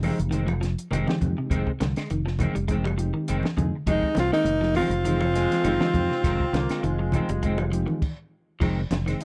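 A short excerpt of intense, driving afrobeat opens with the full rhythm bed at 101 BPM in F dorian, lightly swung on the sixteenths over a single Fm7 chord. A round, dark fingered bass sits up front, with a compact cocktail kit of punchy kick, high-tuned snare, hi-hat and crash in a small room with a rolled-off top, while ringing, band-limited congas and very quiet woody claves fill in behind. Two clean, picked electric guitars carry arpeggios and chorus-treated stabs, joined by a very quiet, barky, lightly overdriven reed electric piano playing accompaniment. At 3.9 seconds a breathy, whispered alto saxophone takes the melody up close and intimate, shadowed in the background by a second alto with vibrato and scooped notes, and a distant, roomy trombone section adds another line from 5.3 seconds. A brief stop arrives at 8.0 seconds, and the dry, close sound recalls a 1970s studio.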